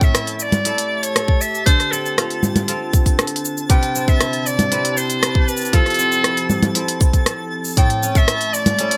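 Folktronica with a pastoral, hopeful mood, this excerpt moves at 118 BPM in a straight 4/4 and is tuned slightly low, to A4 = 435 Hz. A bright, forceful clarinet carries the jazz-inflected solo melody up front, its vibrato roughened by vintage 12-bit sampler grit and trailed by tape echo, though it sounds distant and roomy. Beneath it, a fingerpicked kora rings out crisp acoustic arpeggios, while a warbling, detuned tape-like pad of square and triangle tones holds mellow, nostalgic chords softened by chorus and reverb. The drums are produced and tape-warm: a tight electronic kick sits up front until 8.3 s, playing alongside an organic electronic kit of cabasa, congas, smooth hi-hat and rim click. High in the background, a twinkling granular FM texture adds an octave-up shimmer over a progression that cycles from A7 through Dm7, Cmaj7 and Fmaj7 back to A7, all under a light reverb.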